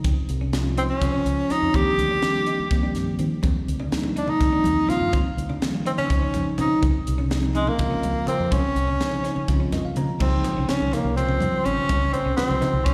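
Electric jazz fusion in 7/8 with a soaring, slick mood, cut from a longer piece and heard as a live gig through the venue's PA with recital hall reverb and small room ambience. A breathy, up-front tenor saxophone solo enters at 0.8 s with light vibrato, subtone and scooped notes, carried by slapback and tape echo, over a bell-like tine electric piano with slapback echo, a foam-muted fingered bass, a crisp, polished drum kit with high-tuned snare and punchy kick, and very quiet, twangy clean guitar stabs. The harmony moves from Dbmaj9 to Ebmaj9 at 1.7 s and back to Dbmaj9 at 6.1 s. Damped, hard-handed congas join in the background at 3.4 s, and the electric piano plays a short fill at 9.5 s.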